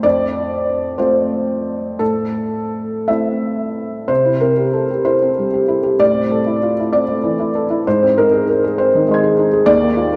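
A soft, mellow felt-muted upright piano plays alone and up front in this tender, intimate neoclassical minimalist piano piece, drifting in a rubato 6/8 at about 54-67 BPM in dotted quarters through F, Am, C and Am before a turn to Ab at 7.9 seconds, its notes sinking into a wet church reverb in a short passage cut from a longer work.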